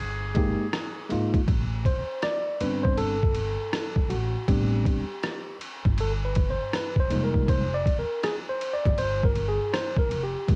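A swung, sampler-style trip hop beat of thumpy kick, hi-hat, ride cymbal and rim click, pitched down, muffled and overdriven on cassette, carries this mellow, nocturnal jazz-hop fragment, where a buzzy, metal-muted trumpet sounds only until 1.1 seconds over woody pizzicato upright bass before a clean tine electric piano, up front through its built-in speakers, takes a solo from 1.5 seconds over an Am11 chord that returns to Fm11, all in a lightly reverberant home-cassette sound.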